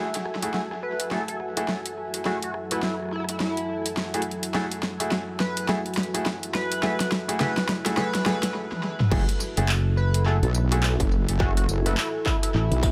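A smooth analog pad with 12-bit sampler grit, brilliant grand piano stabs with audible action noise and a blurred granular cloud pad open this swaggering, gritty glitch hop excerpt, soon joined by a tape-echoed dubstep drum kit with a huge snare and drum fills and, from 0.8 s, an edgy oscillator-sync lead, while a filter sweep on the analog pad builds toward a drop at 9.1 s where a heavy, saturated wobble bass and a distorted electronic kick arrive, followed moments later by a direct fingered electric bass in the echo-heavy mix.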